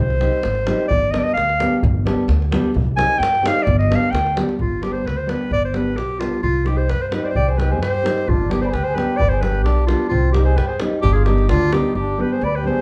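A clear, up-front clarinet leads this virtuosic, bittersweet Balkan wedding-band excerpt in a brisk 2/4, soloing through the opening 4.6 seconds over woody pizzicato upright bass, deep davul and thumb-plucked nylon-string guitar as chords move between Cm and G, before a reedy, boxy accordion joins as a second line at 7.4 seconds, the whole band playing live in a large studio room.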